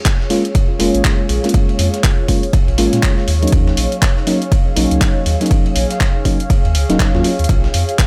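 This deep house excerpt moves at 121 BPM in 4/4 with a 16th-note swing, its punchy electronic kick sitting up front and re-recorded in a small room alongside an overdriven, layered house kit of handclaps and hi-hat. Behind them, a gritty sampler-style kit adds hi-hat, ride cymbal and a medium-tuned snare, compressed and overdriven, with high-pass filtering on its snare, cymbals and hats, kept in the background. A sub bass with an octave layer enters at 0.8 s, deep and full with sine and triangle tones, pumping against the kick. A mellow FM electric piano plays soft, round, dark stabs from 0.3 s to 7.3 s, colored with chorus, a noise layer and digital delay, over a Bb minor progression moving from Bbm7 to Ebm7 and back. Throughout, a warbling, nostalgic pad of detuned sawtooth and triangle tones adds lo-fi haze with chorus, reverb and sidechain pumping, all set in a digital ambience for a smooth, late-night mood.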